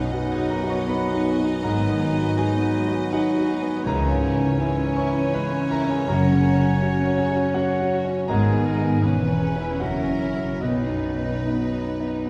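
Heard from further back in a wet recital hall, this lush, passionate romantic passage for piano and orchestra, cut from a longer piece, sways in a rubato three-time feel. A clear, up-front concert grand with audible action noise and long sustain carries the melody alongside a focused violin section, while a second violin section, an airy silver flute, a clarinet and a distant oboe weave second lines over a dark bassoon, a smooth viola section and mellow French horn chords. Timpani struck with hard mallets sound barely audibly in the first 0.5 seconds, and a double bass section and a cello section carry the bass from 1.6 to 11.3 seconds.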